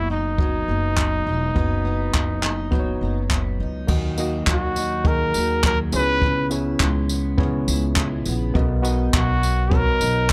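A breathy, whispered trumpet carries the melody up front with light vibrato and a soft attack in this tender, reflective acoustic pop excerpt at 103 BPM in a straight 4/4. Beneath it, a gritty, overdriven reed electric piano through a combo amp and a double-tracked, full-bodied picked steel-string acoustic guitar with audible finger squeak move through B, D#m, C#m7 and Bmaj7, while a woody pizzicato upright bass anchors the low end. A jazz brush drum kit enters at 0.4 s with a boomy kick, crash cymbal, tambourine and handclaps, and the piece sits in a small room with a dark, warm production.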